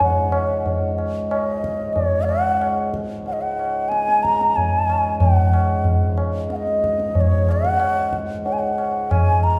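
Hindustani classical music in raga Durga on Db, this short 9.6-second excerpt from a longer piece carries a radiant, devotional mood at a steady 92 BPM in a straight 4/4. A mellow bansuri leads the melody within a range of Db5 to Bb5, its pure bamboo tone shaped by vibrato and a soft attack and placed up front. Beneath it, a pedal harmonium holds a reedy, breathing drone between Db2 and Ab2, sitting lower in the mix with a close-miked, dry, full sound. The tabla, low-tuned and also up front, keeps time with a short ring and a live-room acoustic character. All three parts play throughout, tuned to A4 = 444 Hz, and the recording sits in a recital hall whose reverb lingers for about 1.7 seconds.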